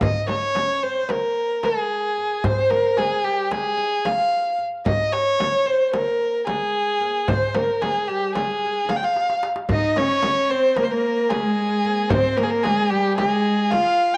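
Moving in a straight 9/8 at 223 eighth-note beats per minute, this passionate Turkish makam ensemble piece is cut from a longer work and stays within one section for its 14.2 seconds. A dark, bowed violin played by a single player carries the melody up front, its expressive vibrato and portamento giving the line a smooth top. Beneath it, a fretless, plectrum-plucked oud with double strings adds a woody second line from the background. Darbuka and frame drum hold the percussion together, the clay-shelled, natural-skin darbuka sounding large and deep, the frame drum just as deep, both captured in a small room. A drum fill at 9.2 seconds leads into the entrance of a single cello at 9.7 seconds: close, reedy and rich, with a period-style gut-string tone, joining the oud on the second line. A wet spring reverb with a 1.6-second decay lends the whole performance a warm, lingering glow.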